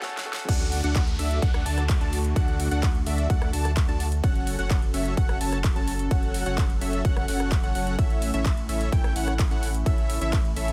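Anthemic and uplifting, this festival progressive house excerpt opens with a brief break where a clear baby grand piano sits in the background and the big-room drum kit, with its huge snare and metallic hats, plays a fill into the drop at 0.5 s, while a noise sweep and downlifter hover behind until 4.2 s. The drop brings a punchy, overdriven electronic kick up front, along with a deep saturated sub bass, a dense, compressed supersaw riff with digital delay, a bold unison lead playing arpeggios, and a lush phased pad holding chords, the bass, supersaw, lead and pad all pumping with sidechain. The chords move from D to F#m to A across the drop.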